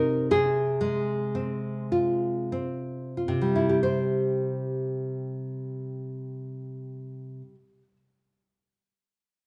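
In a 6/8 pulse of dotted quarters, this romantic piece for solo classical guitar moves with a free, rubato feel, easing and slowing through its opening seconds. The nylon-string guitar plays alone from start to finish, fingerpicked and sitting up front, its deep classical tone ranging from C3 to C5. The mood is intimate and melancholic, opening on an F minor colour over a C bass before settling onto a bare C5 at 3.8 seconds as a second section begins. A moderate studio reverb with a 1.1-second decay lends the guitar a gentle sense of space, as if heard live in a large room. Cut from a longer work, the brief fragment leaves its unhurried, sorrowful phrasing suspended.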